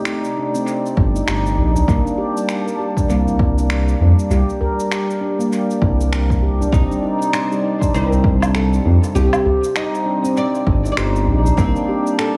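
An echo-heavy mix with light reverb and small-room ambience frames this warm, mystical organic downtempo excerpt in C dorian at 99 BPM, its 16th notes swung. A detuned analog pad with chorus and sidechain pumping holds sustained chords beneath ringing, airy handpan arpeggios steeped in dub echo, while overdriven electronic finger snaps, shaker and woodblock enter at 0.1 s. At 1.0 s a punchy overdriven kick and an up-front, gliding synth bass with portamento arrive, followed at 1.6 s by a deep, close udu sitting in the background, and from 6.7 s a bright, woody, plectrum-plucked fretless oud carries the melody with vintage 12-bit sampler grit and dub echo.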